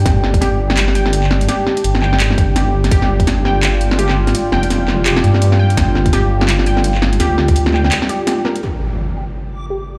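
A deep, detuned wobble bass sits up front in this dark, tense half-time drum and bass cut at 168 BPM, driven by a tight layered kick and an electronic kit of cracking snare, metallic hats and handclaps. Beneath them, a moody analog pad holds sustained chords with phaser and sidechain pumping, while a warbly, dusty pluck plays arpeggios through 12-bit sampler grit and tape echo. After a short break at 7.9 seconds, an electronic impact lands at 8.6 seconds with a filter sweep on the pluck and a faint, reversed granular texture swelling in a big, reverberant room.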